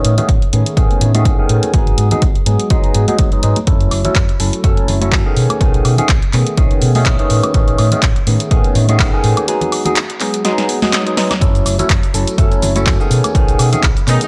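Light digital ambience and a filter sweep running throughout color this groovy, nostalgic slice of filtered disco house. A punchy electronic kick and an analog drum machine of snare, hi-hat, handclaps, cabasa and woodblock, both re-recorded in a large room, carry the swung sixteenths, while ringing congas and tambourine sit close and dry in the background. An up-front, barky tine electric piano played through a combo amp with phaser, pumping and low-pass filtering moves through Amaj9#11, G#m7, F#m7 and B13 over a dark, round fingered electric bass. A break opens at 9.5 seconds, with a drum fill arriving at 10.4 seconds, and at 14.1 seconds a brilliant horn section with vibrato and octave doubling, roughened by 12-bit sampler grit, just begins as the excerpt is cut off.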